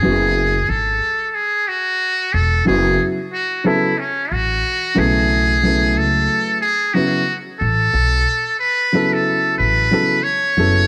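A metal-muted trumpet, a dark concert grand piano and a pizzicato upright bass start together in this mellow, nocturnal hip hop fragment, which swings gently in 4/4 and moves from F#m9 to B9sus4 at 5.0 seconds. The up-front trumpet carries a buzzy, thin jazz-style solo with light vibrato and tape echo. The smooth, vintage-toned piano accompanies with short sustain, and the woody, growly bass sits beneath them, all in a small room with light reverb and the character of a home cassette recording.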